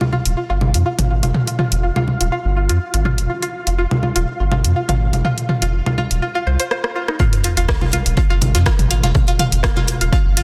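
A twangy, string-like resonator pluck opens this cool, quirky minimal techno excerpt under a filter sweep, with chorus, phaser, digital delay and sidechain pumping, alongside up-front electronic congas and toms that sound tape-warm and roomy. A round, deep analog bass pumps beneath, an overdriven techno kit adds hi-hat and rim clicks, and a very quiet flickering, grainy texture hovers softly above. After a swell from 6.5 seconds and a drum fill, the drop at 7.2 seconds brings in a punchy, dry, overdriven electronic kick, a faint, dark soul drum kit with hi-hat and snare, and a sub-drop impact in a dense, heavily limited mix.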